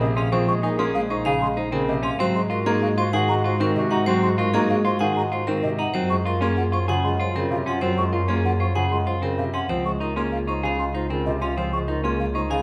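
From the first beat, a bowed chamber double bass section sits up front with a rich, focused tone beneath a clear concert grand piano accompaniment, while a picked, clean electric guitar and a mellow, hollow flute in the background spin arpeggios, and a bright, ringing hard-mallet vibraphone carries the melody over a distant clarinet second line in this hypnotic, propulsive minimalist classical pattern piece at 192 BPM in 6/4, moving through Bbm11, Ab9, Gbmaj9 and Db69 in Db major within a moderate scoring-stage reverb.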